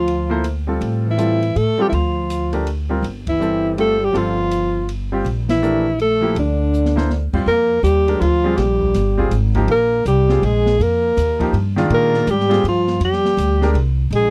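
A dry, close studio sound in a 1970s style frames this searching, intense stretch of modal jazz in 3/4 at 162 BPM, swung and cut from a longer piece. The alto saxophone carries the melody with vibrato, subtone and scooped notes, and a forceful, punchy trombone adds a lower second line. Woody, growly pizzicato upright bass, a clear baby grand piano and a dark, smooth drum kit with a punchy kick support them, with band accents at 3.2 s, a drum fill just before the music settles into F dorian at 7.5 s, and sus-flavoured chords in the second half.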